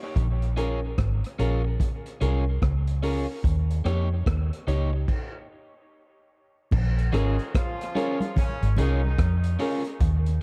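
Dub reggae with a heavy, hypnotic pull, cut from a longer piece and built on a swung sixteenth-note feel over a Bbm7 to Eb7 vamp. A dark, foam-muted vintage electric bass sits up front with a round, amped tone, beside a crunchy breakbeat kit heard in a small room, with a punchy kick, rim clicks, hi-hat and dusky, rolled-off crash cymbals. Soaked in dub echo, a slightly broken-up picked electric guitar plays accompaniment while a worn, woody upright piano adds boxy, slightly detuned stabs with audible action noise and short sustain. After a stop from 5.1 seconds, the groove returns to Bbm7 at 6.7 seconds, where thick-skinned, damped congas enter close and dry in the background, and at 7.1 seconds a tight, clear horn section with light vibrato adds a distant, roomy second line. The echo-heavy mix carries light reverb and small room ambience.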